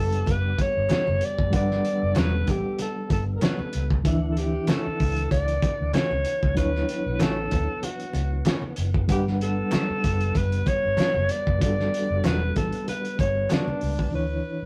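Romantic and warm, this lush 1970s-style soul excerpt swings gently as an up-front alto saxophone, rich with vibrato and scooped notes, carries the melody over a reedy, slightly out-of-tune electric piano with fast tremolo and a faint, lightly overdriven tonewheel organ turning through a slow rotary speaker. A dark, round fingered electric bass and a muffled, gritty, lo-fi drum kit with a fat snare anchor the groove, while low-tuned congas and crisp handclaps sit very quiet in the mix and a twangy clean electric guitar plays a riff in the background from 0.9 seconds. The rough rehearsal-room recording carries light reverb, with the harmony moving between Gmaj7 and Dmaj9.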